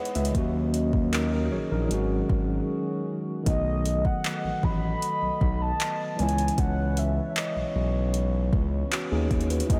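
A straight 4/4 groove at 77 BPM sets up this moody, sensual contemporary R&B fragment in C# minor, with a smooth electronic drum kit entering at 0.1 s, its soft kick, metallic hi-hats and handclaps sounding produced and re-recorded in a small room, placed up front. A smooth gliding synth bass follows at 0.2 s, sitting up front with a sawtooth-and-triangle, wave-folded tone, fast attack, long sustain, vibrato and portamento. A clean tine electric piano, heard as if through built-in speakers, carries the accompaniment alongside a mellow, distant French horn section holding classical-style sustained chords with a roomy ensemble quality and a sidechain pumping effect. The harmony moves from D#m7 to G#7sus4, and after a break from 2.7 to 3.5 s, a new section begins with a horn-like synth lead carrying the melody in a high register, its round, vintage, warbling sawtooth tone shaped by a filter sweep, soft attack, vibrato, chorus and delay. 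Chords shift to B7 and then C#m9 under a light reverb, and the piece is cut from a longer work.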